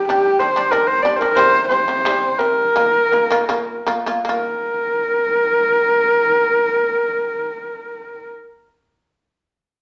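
A dark, nasal horsehead fiddle sings a proud, galloping Mongolian folk melody up front with vibrato and portamento, while a buzzing, percussive shamisen plays arpeggios beneath it, the pace slowing through the first 4.3 seconds of this short cut from a longer piece, all set in a large studio reverb.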